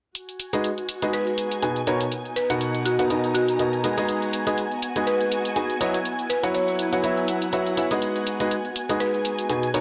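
A dry electronic hi-hat keeps time in four under this soulful, energetic piano house passage with a swung sixteenth feel, cut from a longer piece, as a clear grand piano riff steps up front at 0.5 seconds over minor seventh, major seventh and suspended chords. A buzzing, woody marimba carries the melody from 1.1 seconds through an analog delay, while a silky, detuned analog string pad and a lush, bowed studio string section with vibrato sit in the background. The gritty hardware recording has light reverb and a small room ambience.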